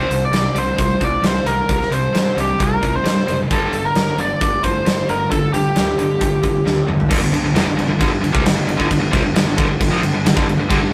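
A rough rehearsal-room recording with tube saturation and light reverb carries this menacing, aggressive hard rock cut in G minor, moving at 133 BPM in a straight 4/4. A biting, overdriven lead guitar sits up front with the melody between G4 and D5, playing until 6.8 seconds. Beneath it, a distorted electric guitar, compressed and scooped, and a tight distorted guitar both hold riffs in the background from F2 to G3. A growly fuzz picked electric bass runs low from F1 to G2. A huge arena drum kit, punchy in the kick with bright cymbals and a pumping room sound, drives the track up front, and a drum fill from 6.7 to 7.1 seconds leads into the second section. Near the very end, a double-tracked high-gain guitar enters at 10.7 seconds for a brief riff before the cut.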